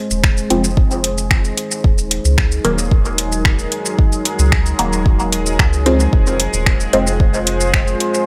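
Dub techno at 112 BPM in F phrygian, hypnotic and deep, this excerpt from a longer piece sets a tape-warm, up-front electronic kick and a deep house kit of finger snaps, shaker and metallic hi-hats with dub echo alongside a moody, warbling detuned sawtooth pad with chorus and sidechain pumping, a bubbling resonant texture of random filter steps, a round nasal analog bass, and muted phaser-treated dub chord stabs with a moving notch and echo, all moving from Fm to Ebm at 1.8 seconds and back at 6.1 seconds in a lightly reverberant room.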